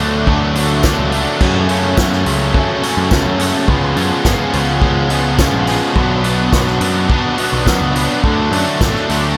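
Heard in a small, roomy space, this upbeat, jangly indie rock excerpt pairs two up-front picked guitar riffs, one crunchy and overdriven, the other distorted, scooped and chorused, with a growling, amped bass, a distant acoustic drum kit played with bundle sticks under dark cymbals and a tight kick, a jingly tambourine in the background, and a very quiet, reedy vintage combo organ holding sustained chords that move from Dmaj7 through F#madd9, C#7(no3) and Bmadd9.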